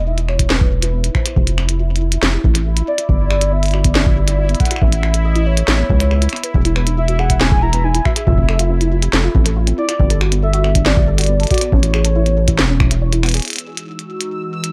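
A dry, echo-heavy mix carries this wistful, intricate IDM excerpt, where a velvety, chorused synth lead sings over warbling lo-fi pluck arpeggios shaped by a filter sweep, while a rubbery square bass sits up front and a deep analog kick joins a glitchy kit of tiny snare, clicky hats and finger snaps that fills at 13.2 seconds, a bubbling stepped-filter texture drifts in the background, and a hollow, flute-like pad with sidechain pumping enters at 13.7 seconds to close out the passage alongside the kit and texture.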